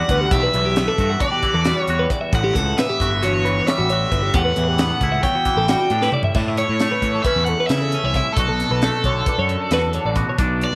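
An overdriven electric guitar sits up front with the melody from the first moment, joined by a twangy clean guitar accompanying through a phaser and a bright twelve-string guitar playing phased arpeggios, in a wistful, intricate piece of math rock and midwest emo in 9/8. A fuzzy, overdriven picked bass and a crisp, polished fusion drum kit with a high-tuned snare and punchy kick enter almost at once, all set in light studio reverb. After Em9 and A13 chords, a drum fill at 6.0 seconds leads into a new section at 6.4 seconds built on A and Bm7.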